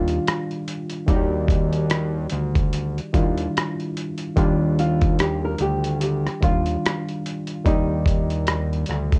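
Cosy and mellow, this lo-fi hip hop excerpt sits at 73 BPM in Eb major with a swung 16th-note feel, resting on a single Ebmaj9 chord for its 9.2 seconds. A small, dark nylon-string guitar carries the fingerpicked melody with audible finger squeak, filtered and trailed by tape echo, over a reedy, barky electric piano heard through its built-in speakers and a fat, saturated analog bass up front. A gritty, compressed sampler-style kit of thumpy kick, hi-hat and rim click enters at 0.1 seconds, and the whole mix has worn, warbling old cassette tape character with light reverb and a dulled top end.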